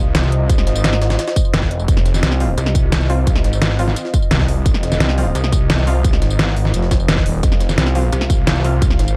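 A dark, warm digital ambience frames this mechanical excerpt of technical drum and bass in F minor at 173 BPM, where a snarling, detuned sawtooth bass with tube distortion and sidechain pumping sits up front beneath a moody analog pad of sustained chords treated with chorus and phaser. A layered dubstep kit with a deep snare, crisp hats and tambourine in studio reverb enters at 0.1 seconds, and a punchy electronic kick joins at 0.5 seconds, while a gritty, pitched-up jungle sampler-style kit with a high-tuned snare ticks very quietly underneath. A thick FM bass growls in at 2.2 seconds and returns from 5.0 seconds, and a bold, orchestra-hit-like synth stab with reverb and delay punches from the background.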